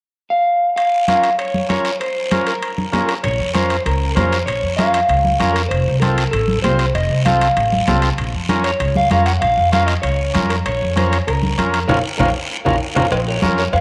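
Danceable and fiery, this cumbia fragment opens with a dark, slightly broken-up electric guitar melody bathed in spring reverb, joined at 0.8 seconds by raspy guiro and ringing metal-shell timbales and cowbell sitting in the background, then by a buzzy, overdriven vintage combo organ with light vibrato and thick-skinned congas played with soft hands, before a woody, bright pizzicato upright bass arrives up front at 3.2 seconds, and the band hits accents capped by a drum fill at 12.5 seconds, the whole mix held in a moderate plate reverb.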